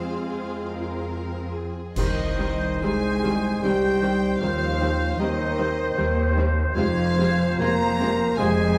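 Rich, vibrato-laden bowed violins carry the melody high over a quieter second violin line in this solemn, melancholic excerpt from a slow romantic C minor orchestral movement in 3/4, which moves with rubato at 68-79 BPM through Fm, Cm and Cm/Eb before returning to Fm. Expressive viola accompaniment with portamento, mellow sustained French horn chords, ringing harp arpeggios, and a lush, distant cello and focused double bass foundation sit beneath the melody. At 2.0 s a clear solo oboe, a smooth-topped clarinet, an airy large flute ensemble and a bassoon with light vibrato join, while dark clash cymbals and concert bass drum mark an accent and fall silent by 3.6 s, all set in a wet recital-hall reverb.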